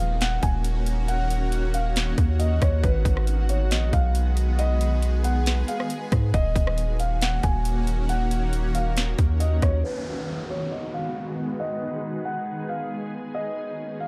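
A dark, dry production frames this melancholic, ethereal stretch of atmospheric cloud-rap in a half-time feel. A felt-muted upright piano carries a soft, intimate melody through delay and a low-pass filter over a shimmering, detuned ambient pad with slow attack, chorus, its own reverb and sidechain pumping, while a deep sine 808 bass and an overdriven trap kit of hard-clipped kick, sharp snare, metallic hats and rim click sit up front. The bass and drums stop around 9.8 seconds, where a filter sweep begins and an electronic downlifter sounds until 13.3 seconds, leaving piano and pad to drift between Ebm7 and Abm7.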